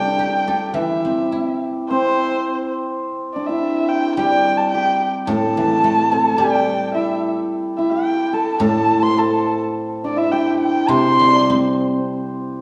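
A reverberant recital hall surrounds this short Chinese traditional chamber ensemble, heard from further back in the room with a trace of small-room ambience. The mood is graceful and pastoral, and the pulse flows freely in a rubato feel. A single bowed erhu carries the melody up front, its dark, nasal and woody voice shaped by vibrato and sliding portamento. A hammered dulcimer adds a bright, shimmering second line, while a guzheng played with fingerpicks gives silvery, ringing accompaniment from the lower range. The music moves into a new section at 3.1 seconds, and the erhu falls away at 11.8 seconds, leaving dulcimer and guzheng to close this passage cut from a longer piece.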